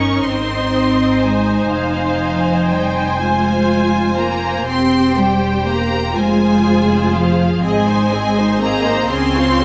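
Bathed in a wet recital-hall reverb, this solemn, elegiac excerpt of a slow romantic movement for string orchestra unfolds in a rubato 6/8, with a focused violin section singing the lush vibrato melody over a second violin line that sounds intense and distant, bowed violas adding clear accompaniment, a smooth, even cello section standing out as the most prominent voice, and a close, rich double bass section anchoring the bass.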